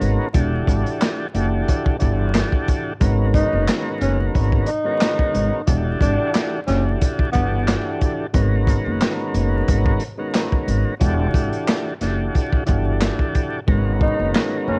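Boom-bap hip-hop at 90 BPM with a tough, dark mood, this excerpt pairs a crunchy, saturated breakbeat kit of kick, snare, hi-hat and handclaps with a woody, thumpy pizzicato upright bass and a smooth tonewheel organ through a slow rotary speaker over Em11 and G#m11 chords, while a mellow subtone tenor saxophone with scooped notes and analog delay plays from 3.3 to 7.6 seconds and returns at 14.0 seconds, all carrying the character of a cassette home recording with vinyl crackle.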